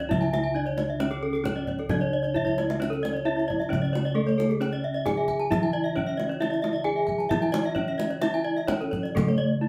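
A brilliant, shimmering stretch of Balinese gamelan in C# pelog opens at once with two bronze metallophones and kendang, a third metallophone joining a moment later, moving at a straight 133 BPM in 4/4. Out front, one metallophone carries the melody between A3 and G#4, its horn-mallet strikes airy and ringing, and its paired tuning sets up beating tones. Two further metallophones spin arpeggios above it, one close-miked, dry and full from G#4 to A5, the other lighter and more open from G#4 to G#5, with the same bright bronze shimmer. Beneath them the bossed gongs hold the bass from C#3 to E4 with a round, dark, smooth beating tone. The kendang adds deep, hard-handed drumming with the sound of a live room, and breaks into a short fill at 2.4 seconds. The ensemble plays together in one room under a wet studio reverb, and this short section, lifted from a longer piece, runs to 9.7 seconds.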